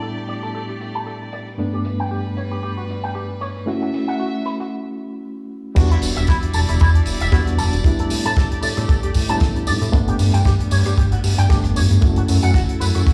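Sensual and sleek, this nu-disco excerpt opens with a reedy, lightly overdriven electric piano with fast tremolo and pumping, rich gut-string chamber strings holding sustained chords with vintage sampler grit, a twangy, picked envelope-filter guitar riff bathed in lush chorus and delay, and a damped 70s kit with dark cymbals and a fat snare, before a short break at 4.7 s gives way to a drop at 5.8 s, where a thick, detuned sawtooth analog bass and a tight, dry kick drum enter.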